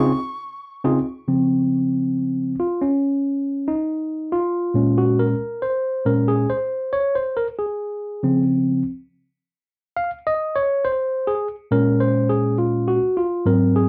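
Reggae at 69 BPM in Db major, cut from a longer piece, with a romantic, smooth mood and a dry, close sound from a 1970s-style studio in a small room. A soft, breathy metal jazz flute with vibrato and a tongued chiff touches a single high Db6 through tape echo for only the first 0.9 seconds. A worn, slightly out-of-tune tine electric piano sits up front through a combo amp with slapback echo, then carries a solo from 1.3 seconds over alternating Dbmaj7 and Bbm7 chords.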